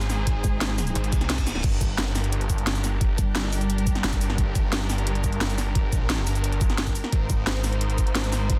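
A straight 4/4 drum and bass groove drives this tense, futuristic excerpt from a longer dark technical piece, with a layered, overdriven electronic kit of cracking snare, bright hi-hats, cabasa and crash sitting up front, and a knocking electronic kick joining at 0.3 s. Underneath, a snarling, detuned saw bass growls with a resonant moving notch, its distorted, compressed tone pumping against the beat. A metallic FM wobble bass, saturated and touched with chorus, cuts in briefly from 0.4 s and again later. Far behind, a lush bowed string section holds sustained chords with vibrato, also pumping, as the harmony moves from Ab to G minor and back. A very quiet reverse cymbal and electronic zap flicker past at 1.1 s and again at 4.1 s, all within a dense, heavily limited modern master set in digital ambience.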